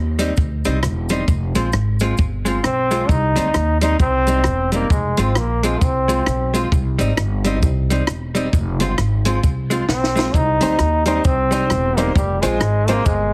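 A swung ska groove at 132 BPM in 4/4 drives this mischievous C minor excerpt, rocking between C minor and F minor. A woody, up-front pizzicato upright bass and a compact cocktail drum kit, with its high-tuned snare, punchy kick, rim click and hi-hat, carry the pulse throughout, while a grainy cabasa sits in the background. A dark, clean hollow-body jazz guitar supplies picked accompaniment with a slapback echo. A bright trombone with light vibrato and a soft attack takes the melody up front, entering at 2.6 seconds, dropping out and returning at 9.9 seconds together with a drum fill, also carrying slapback echo. From 10.6 seconds a worn, slightly detuned upright piano adds boxy stabs in the background, and the whole mix has a heavily compressed, radio-like sound in a small room with light reverb.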